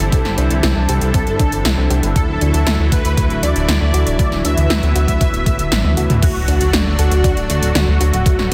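Driving and moody, this short synthwave cut at 118 BPM sets a smooth, full-bodied supersaw melody over a lush, detuned pad that pumps to the sidechain, a very quiet nasal pluck arpeggio, a glossy, up-front pulse-wave bass, a thumpy electronic kick and overdriven 80s drums with gated snare and toms and metallic hats, moving from Cadd9 to Dadd9 before a drum fill lands on D at 6.2 seconds with an impact and a faint sub drop, all in a dense, heavily limited modern master.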